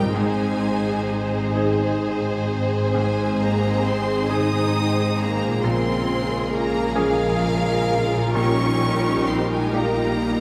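A clear, focused violin section carries the vibrato-rich melody high above a smooth-topped second violin line in this tender, hopeful cinematic film score, moving at a rubato 44 BPM in 6/8 in Ab major and shifting from Ab to Bbm7 at 5.6 seconds. Beneath them, a bright, brilliant baby grand piano and expressive violas with a soft attack and portamento sit in the background, while a very quiet, ringing harp plays thumb-plucked arpeggios and dark, woody double basses join rich, even cellos on the bass. Mellow, distant French horns enter at 0.1 seconds with sustained chords, and a wet scoring-stage reverb surrounds this short passage cut from a longer piece.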